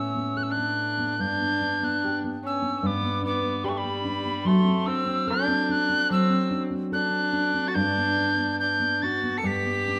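Celtic slow air in a pastoral, tender mood, drifting in free rubato around 66-76 BPM, where an airy, vibrato-laden, close-miked tin whistle carries the melody high above a nasal, gut-string fiddle second line and a dark, full-bodied nylon-string guitar, thumb-plucked with audible finger squeak, moving through Aadd9, G and D7, all three up front in a moderate scoring-stage reverb.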